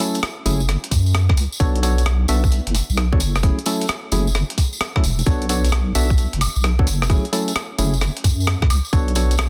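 Hollow, mellow organ stabs with chorus and tape echo open this late-night, bouncy two-step UK garage excerpt in B minor at 131 BPM alongside a gritty, pitched-up breakbeat kit of hi-hat, rim click and woodblock with a clipped snare, plus a jingly tambourine, before a deep, dark wobble bass with chorus, tube saturation and sidechain pumping arrives up front at 0.5 seconds and a tight, layered electronic kick joins at 0.9 seconds, all swung on the 16ths over F#m9 and Bm9 chords in a dry, dense, heavily limited mix.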